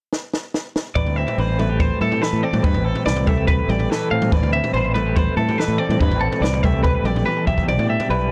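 Math rock with a midwest emo lilt, this wistful, intricate fragment moves at 143 BPM in A minor, opening with a drum fill from a compact cocktail kit (dry, punchy kick and high-tuned snare sitting up front) before the full band enters at 1.0 seconds on an Am11 chord. A bright, twangy twelve-string electric guitar picks compressed arpeggios through digital delay above a dark, slightly broken-up electric guitar with tremolo, while a growling fingered bass adds overdriven grit underneath. Another drum fill arrives at 7.3 seconds as the harmony shifts to Em7/B, all within a dark, warm production carrying little reverb.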